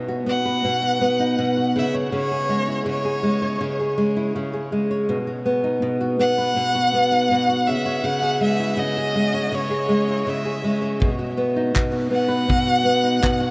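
Acoustic pop in C# minor at a gentle 81 BPM in straight 4/4, this short excerpt cut from a longer piece carries a wistful, reflective mood. A bright, fingerpicked flamenco guitar sits up front from the start, its finger squeaks audible as it moves between B and C# minor chords. A single bowed violin enters at 0.3 seconds with a clear, focused tone, vibrato and a smooth top, carrying the melody. At 11.0 seconds a loose indie drum kit arrives with handclaps and a punchy kick, mid-forward and rolled off at the top. A huge, wet ambient reverb places the music in a vast, echoing space, letting each note hang long after it is played.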